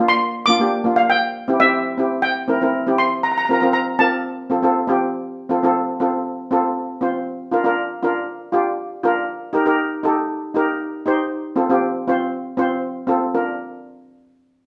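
Set in a large, reverberant studio where the band plays live together, this sunny, festive calypso fragment from a longer piece rings with two steel pans placed up front. A lead pan, struck with medium rubber sticks, carries an airy, shimmering melody between E5 and D6 until 5.0 seconds. A metallic double seconds pan supplies the mid-forward accompaniment, carrying on by itself until 13.6 seconds.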